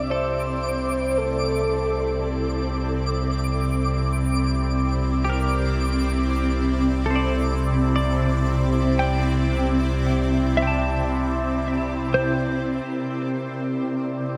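A shimmering, ethereal ambient pad fades in over a Cadd9 chord alongside a round sine sub bass, a tense, detuned bowed-like drone, a sparkling granular texture that fades out by 12.9 seconds, and bright, clean semi-hollow electric guitar arpeggios, while a breathy flute-like synth lead sings briefly at the start and returns at 12.9 seconds in this luminous, weightless ambient piece, steeped in a huge, lingering reverb.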